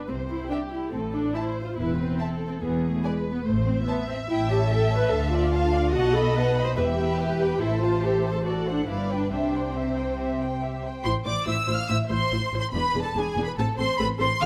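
Close, detailed strings ring in a moderate scoring-stage reverb as a lively, spirited classical-period movement for string orchestra moves quickly at 143 BPM in 4/4, with a rich, expressive violin section carrying the melody from G4 to F6 and a second, lush violin line entering at 0.5 s, while a dark, intimate viola section supplies accompaniment and warm, smooth cellos and double basses hold the bass, all bowed with vibrato as the harmony moves from C major through a busy chain of chords before turning to A minor at 11.0 s in this excerpt cut from a longer piece.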